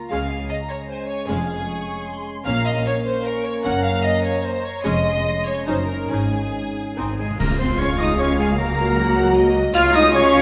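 In 3/4 at 152 BPM, pulled by rubato, this fast romantic orchestral movement in Db major sounds graceful and cheerful, with a dramatic sweep. It is cut from a longer piece. The violins carry the melody high above a second, lush and distant violin line, while violas with portamento fill the background, and expressive cellos and double basses anchor the bass with vibrato. A dark, roomy French horn section holds sustained chords from the very start. Bright cymbals and concert bass drum join at 4.8 seconds, and hard-mallet timpani play a crisp fill at 7.0 seconds, leading to a full accent as the music turns toward Db. From 7.2 seconds a pure metal flute, a close oboe and a mellow clarinet add second lines in the background, all set in a moderate stage reverb.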